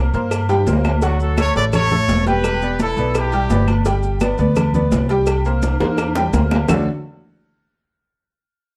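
Sunny and festive, this salsa excerpt moves at 169 BPM in D major, with a worn, slightly detuned upright piano, complete with audible action noise, accompanying a pizzicato upright bass with steel strings sitting up front. A tight, up-front trumpet section with light vibrato carries the melody from 1.0 to 3.7 seconds over chords moving through Dmaj7, Em7, G and C7, while a drum fill arrives at 5.6 seconds. The percussion comes from high-tuned congas, tight cowbell and bongos, woody claves and grainy maracas in the background, plus ringing metal-shell agogo bells and timbales set in a distant large room, all within a dark production with light reverb.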